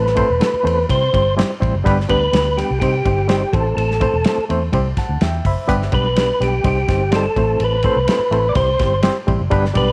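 A mellow, lightly overdriven tonewheel organ carries the melody through chorus vibrato, a fast rotary speaker and slapback echo. Beside it, a reedy electric piano with fast tremolo and a round, foam-muted fingered bass open this joyful, danceable 1960s-style soul excerpt at 125 BPM in 4/4. A dark, punchy small-room drum kit with hi-hat, ride and snare joins at 0.1 seconds, while the chords cycle through Am, C, G and Cm. The electric piano slips in a brief fill at 5.0 seconds under light reverb.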